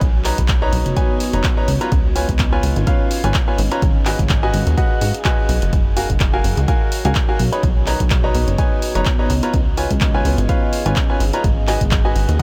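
A bright, woody upright piano riff with audible action noise comes in at 0.2 seconds, its short notes pumping against the beat and trailed by an analog delay, over a joyful, feel-good piano house groove with a gentle swing on the sixteenths. A plucky, funky analog bass pumps beneath a punchy electronic kick, while a drum machine recorded in a small room adds handclaps and hi-hat. A deep, moody pad warbles with chorus in the background through chords moving from Bmaj9 to C#7, G#m7 and F#maj9, all set in light digital ambience in this excerpt cut from a longer piece.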